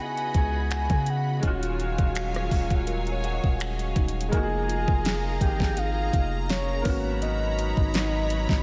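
Longing and moody, this contemporary R&B excerpt pairs a round, dark synth lead carrying the melody with chorus and phaser over a felt-muted upright piano with audible action noise, a clear, bowed symphonic string section holding sustained chords, bright clean electric guitar arpeggios sitting in the background with lush chorus and analog delay, and a ringing, meditative handpan that drops out at 7.2 seconds, while a tape-warm R&B drum kit with knocking kick, fat snare, metallic hats, rim clicks and finger snaps arrives at 0.2 seconds and a deep, mellow 808-style bass follows at 0.3 seconds, all set in a light reverb.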